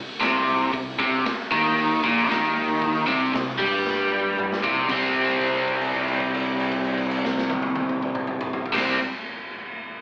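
A gritty snapshot of a live club gig heard through the venue's PA, with light club reverb and an AM-radio tone, this short excerpt of blues rock power trio and southern rock drives along in a straight 4/4. Up front, a double-tracked, overdriven electric guitar picks a bright riff in its low register with a slapback echo. Beneath it, a fingered electric bass growls with fuzz and overdrive, punchy and direct. The raw garage drum kit of crash, hi-hat, kick, snare and toms sits in a bright stone room that pumps, with a punchy kick, medium-tuned snare and a saturated, rolled-off top. A drum fill runs from 3.9 to 4.9 seconds, leading into the second section, where a held note carries on until 8.7 seconds.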